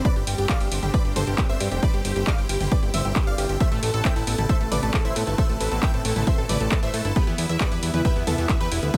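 A dry excerpt of soaring, euphoric uplifting trance at 135 BPM in a straight 4/4, where a huge, detuned supersaw lead carries the melody over a tape-warm, up-front electronic kick and a punchy analog drum machine with handclaps, hi-hat and toms. A fat, nasal, saturated analog bass pumps against the kick, a round analog pluck plays a second line in the background, and a lush unison pad with chorus and phaser holds sustained chords through Gsus4, Amadd9 and Em. At 3.6 seconds a very quiet, chorused pluck arpeggio enters with digital delay and sidechain pumping.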